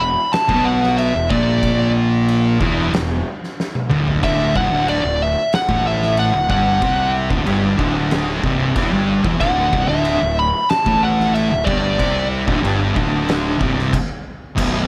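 An up-front fuzz lead guitar carries the melody through this ominous, sludgy stretch of stoner and doom metal, its compressed, distorted tone trailed by tape echo until it drops out at 12.3 seconds. Beneath it, two thick fuzz guitars sit in the background playing a heavy riff, one with a warm cast and the other darker, while a growly, overdriven fingered bass with a bright, direct edge anchors the low end. An oversized, low-tuned acoustic drum kit enters just after the start, with a boomy kick, fat snare, toms and dark cymbals, its saturated, gritty sound rolled off at the top and set in a bright stone room. A drum fill around 3.6 seconds leads into the shift from an E5 to a D5 chord. The band then pushes on in a straight, steady 4/4 before a stop near the end of this section cut from a longer piece, all heard within a small room ambience.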